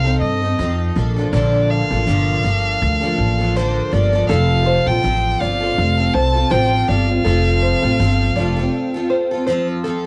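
A reflective, wistful pop excerpt opens with a smooth, bowed violin singing the melody with gentle vibrato over a bright, full-bodied picked steel-string guitar, double-tracked, and a woody, thumpy pizzicato upright bass, all up front with a light swing. At 4.3 seconds a small, fingerpicked nylon-string guitar adds arpeggios as the chords move from F7 through Bbmaj7 to F, and the bass drops out at 8.7 seconds for a brief break. The home-cassette sound gives the violin and both guitars a tape-worn tint, the bass carries a touch of transformer saturation, and a moderate studio reverb surrounds the whole.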